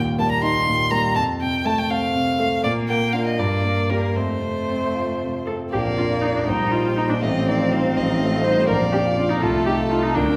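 A single violin opens at once with an intense, vibrato-laden melody with a smooth top, carried over a warm concert grand piano whose deep bass and long sustain sit up front. This is a quick classical-period movement for piano quintet in 6/8, counted at 81 BPM in dotted quarters and played with rubato, with an urgent, dramatic mood and tuning at A4 = 439 Hz. A cello joins at 0.2 seconds as a second line in the background, bowed with soft attacks, expressive portamento and vibrato. At 5.5 seconds a viola adds full-toned accompaniment with gentle attacks and sliding portamento, and at 5.7 seconds a second violin brings a focused, bowed counter-line as the music moves into a new section. The harmony moves through Eb, F, Bb and G minor before turning to Cm7/Bb and F7/A. A reverberant recital-hall acoustic surrounds the ensemble in this passage, which is cut from a longer piece.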